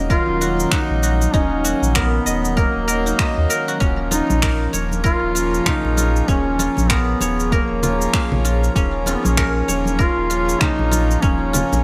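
Organic downtempo at 97 BPM with a meditative mood, moving from Ebm to Bbm/Eb, where a distant, scooped-note duduk melody floats over silvery fingerpicked guzheng arpeggios, a reedy, breathing pedal harmonium, a warbling lo-fi pad in the background, a round sine sub bass up front, a punchy layered electronic kick, electronic cabasa and finger snaps, and ringing dry congas joining at 4.1 seconds, all set in a moderate plate reverb with bright 1980s-style digital production.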